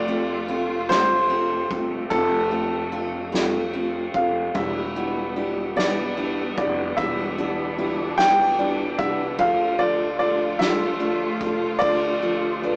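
Tender and romantic, this slow pop ballad in six-eight sways through F, Em7 and Dm as a clear, up-front baby grand piano carries the melody with long sustain and audible action noise, over a dark, felt-muted upright piano accompaniment. Background steel-string guitar arpeggios sound full-bodied, while a studio string section holds sustained chords with vibrato and portamento, and a woody, thumpy pizzicato upright bass anchors the low end. A distant soft-mallet drum kit with a punchy kick sits in a moderate stone-room reverb, and the whole cut from a longer piece carries the rough, saturated character of a rehearsal-room recording heard through a small speaker.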